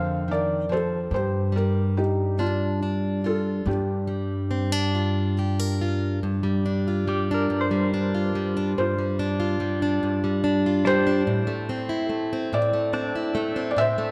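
A moderate concert-hall reverb gives this excerpt of an intimate, reflective acoustic folk-pop ballad its gentle space, at a slow 48 BPM in a straight 6/8, tuned slightly low to A4 = 437 Hz. A soft, felt-muted upright piano carries the melody up front, with audible action noise, over a bright fingerpicked steel-string acoustic guitar, while a woody pizzicato upright bass anchors the G minor opening until 6.2 s, when the harmony turns G dorian. From 7.1 s a clean, compressed electric guitar recorded direct adds picked arpeggios with tremolo, as the chords move from Fsus4 and Gm7 to Am7.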